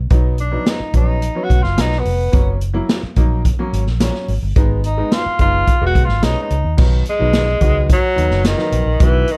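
A straight, danceable four-beat groove drives this uplifting slice of uptempo 1960s-style soul, cut from a longer piece. A swinging big-band drum kit of crash, hi-hat, snare and boomy kick sits in a roomy studio space. Beneath it, a vintage foam-muted electric bass played with the fingers gives a round, punchy low end up front. A woody, brilliant upright piano fills in the accompaniment. A clear tenor saxophone carries the melody with pop-style vibrato, taking a solo through the first 6.8 seconds before the passage moves into a new section. The production is dark and warm, with little reverb.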